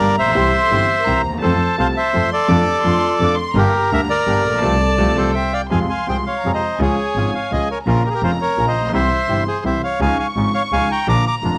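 A rubato 3/4 tango at 168 BPM, this sultry, passionate fragment moves from F major into F minor at 5.7 s. A bright, reedy, close-miked bandoneon carries the melody up front, over a dark chamber violin section with gut-string tone on a second line, a clear baby grand piano with audible action noise and long sustain, very quiet bandoneon stabs, and a woody bowed double bass with a soft attack and portamento. A ringing vibraphone with medium hard mallets and motor vibrato sits in the background from 0.5 to 5.7 s, the whole band hits an accent just before the minor turn, and the sound is set in light reverb and small room ambience.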